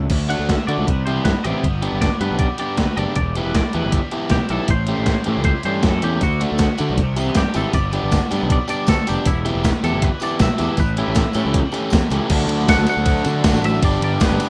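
An upbeat, jangly indie rock piece cut from a longer track opens with two overdriven electric guitars playing a riff, one warm and up front, the other bright and set back in the mix under a lush chorus, alongside a punchy, fuzzed-out picked bass. At 158 BPM in a straight 4/4 and in D major, a gated 80s digital drum machine joins almost at once, its thumpy kick and gated-reverb snare sitting up front with crash, ride and hi-hat, re-recorded in a large room. A twangy, compressed clean electric guitar carries the melody through a digital delay, taking a solo across the opening stretch over a cycle of D, Cmaj7, Gmaj7, Em7 and A7. A bright, band-limited tambourine with a vintage jingle enters in the background at 6.2 seconds, and at 12.3 seconds the music moves into a new section that shifts from D to G. The whole has the light reverb and rough mix of a home demo.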